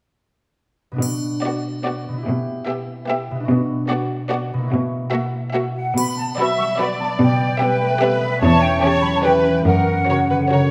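A wet recital-hall reverb surrounds this short cut from a longer playful, whimsical film cue in a lilting three-beat metre, with a magical, mischievous air. An up-front concert harp rings out fingerpicked arpeggios from 0.9 seconds, joined almost at once by a smooth cello section carrying the bass and a dry triangle that sounds briefly twice. A rich, lush violin section sings the melody with soft attack and expressive vibrato, over a second violin line that is close and even and a focused viola section filling in the accompaniment. At 5.8 seconds a large, airy flute ensemble enters from a distance with crisp attack, adding another line high above the strings. The harmony moves through minor chords and a diminished colour before closing on F#.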